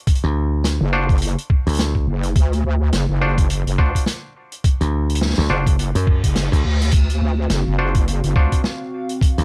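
Swaggering and funky, this glitch hop excerpt rides a gritty, pitched-down electronic kick and a dusky vintage drum kit under a punchy thumbed slap bass and a heavy, detuned wobble bass with chorus and tube saturation, while a twangy clav with sidechain pumping and dub echo stabs above, a reverse cymbal sweeps in at 6.0 seconds, and a moody analog pad with phaser and 12-bit sampler grit arrives at 7.4 seconds, all in a dry mix with vinyl crackle.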